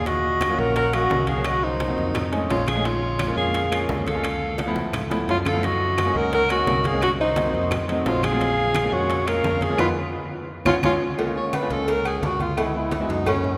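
Afro-Cuban jazz at 173 BPM in Eb minor, sophisticated and danceable, with a breathy, subtone alto saxophone carrying the melody up front with vibrato and scooped notes before stepping into a solo at 11.2 seconds, a pure, distant silver flute adding a second line until 10.9 seconds, a punchy fingered electric bass, an intimate concert grand piano with audible action noise comping, and a background bed of ringing low congas, woody claves, metal-shell timbales with agogo bells and very quiet round bongos with cowbell, marked by drum fills and a band accent before the solo, all set in a wet church reverb.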